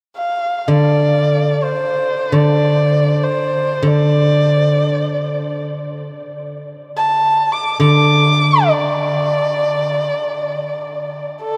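Bathed in a huge, wet reverb that suggests a vast, echoing space, this short cut from a longer Chinese traditional piece unfolds in free time in D yu mode, with a graceful, tender mood. A single bowed erhu carries the melody up front from 0.2 seconds, its dark, woody, close tone shaped by vibrato and portamento. Beneath it, a guzheng played with fingerpicks sounds a ringing, silvery accompaniment from 0.7 to 10.1 seconds.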